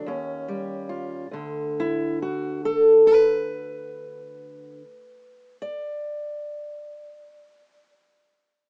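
A fingerpicked steel-string acoustic guitar carries this short acoustic country blues fragment alone, sitting up front with a dark, concert-style tone and an audible finger squeak. The mood is laid-back and soulful, moving in a relaxed 12/8 lilt with a straight feel, and the guitar spans from deep bass notes up into its higher register. The opening moments slow down over an Eb7 chord before the harmony drops away at 1.3 seconds into a stretch of unaccompanied, chordless playing. Light reverb surrounds the guitar, and the rough home-demo mix has a small-speaker quality. Cut from a longer piece, it stops at 7.9 seconds.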